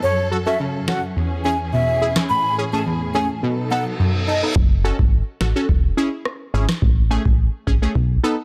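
This bouncy, sultry dancehall excerpt is cut from a longer piece and moves in a straight 4/4 through a cycle of F#m, E6, Amaj7 and B7 chords. It opens with an airy, mellow jazz flute carrying the melody through a digital delay, with a crisp, chiffy attack and an expressive straight tone, while lush, bowed symphonic strings hold sustained chords with vibrato and portamento under sidechain pumping. A bright, detuned sawtooth brass stab plays punchy accompaniment throughout, coloured by chorus and phaser and pumping against the beat, and an electronic downlifter and reverse cymbal mark the start and the rise into the second half at 3.7 seconds. A booming analog drum machine enters at 0.9 seconds with a deep kick, rim click and tonal snare, overdriven and up front. After the flute and strings stop, a round, dark FM bass with a fast, decaying attack takes over the low end from 4.6 seconds while the hi-hats fall silent, all set in digital ambience under a dense, heavily limited modern master.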